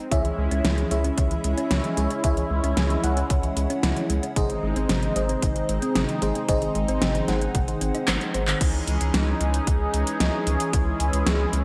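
A smooth, detuned sawtooth pad opens this moody, nocturnal synthwave excerpt at 113 BPM in a straight 4/4, its sustained chords pumping with sidechain and shimmering with chorus. Almost at once a deep, round analog bass and a punchy, overdriven electronic kick arrive, joined by an up-front pop kit of fat snare, metallic hi-hats, handclaps and crash cymbal, itself overdriven and framed in gated reverb. In the background a dark, tine-like thumb-piano pluck spins arpeggios through chorus and digital delay, while a lush, dreamy FM electric piano layered with a soft pad adds stabs colored by phaser, chorus and delay. The harmony moves from C#m to G#, and after a drum fill the pluck and electric piano drop away at 8.6 s as the music settles into C# minor on a C#madd9 chord. The bright 1980s-style digital production sits in a moderate plate reverb, and the kick stops at 10.8 s while pad, bass and kit carry on to the end.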